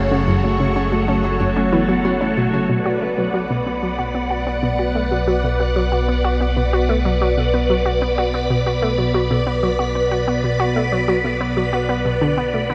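Ambient, sequencer-driven space music in B minor at 93 BPM, this expansive, mysterious passage is cut from a longer piece and drifts in a straight 4/4. A swirling, vintage phased string machine holds sustained chords throughout, bright and up front, its ensemble chorus and phaser giving it a warbling shimmer. Beneath it, an analog drone anchors the bass with a detuned, evolving sawtooth and pulse-width tone, slow to bloom and treated with chorus. An analog pluck riff runs the full length, round and nasal with a wave-folded edge and a fast, decaying attack, repeating through chorus and tape echo, while a ringing, fingerpicked Celtic harp spins acoustic arpeggios through tape echo until 5.5 seconds. A filter sweep on the synth arpeggio sound opens the piece over F#m before the harmony settles on Bm at 2.7 seconds, and the whole mix is dreamy and soaked in a huge reverb with a cassette-tape character.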